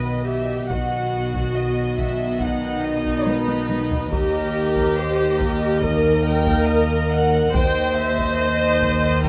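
A slow, straight 4/4 pulse at 70 BPM underpins this mysterious, eerie suspense cue, a fragment of a longer cinematic score tuned slightly low to A4 = 436 Hz. Bowed strings carry the whole passage with soft attacks and sul tasto tone: an intimate chamber violin section holds a single high note of melody with vibrato, while a pure, floating studio violin section traces a second line. The viola section sits up front with vibrato-laden accompaniment, and the cello section, rich and tucked into the background, joins the double basses to anchor the low end with light vibrato. A mellow French horn section, distant and roomy, sustains classical-style chords behind the strings. A taiko ensemble struck with hard sticks enters at 0.7 seconds with a small-room punch and plays a fill from 3.3 to 4.1 seconds, as the harmony moves from B to D# at 4.1 seconds. Close, detailed microphones capture the players, set within a moderate scoring-stage reverb.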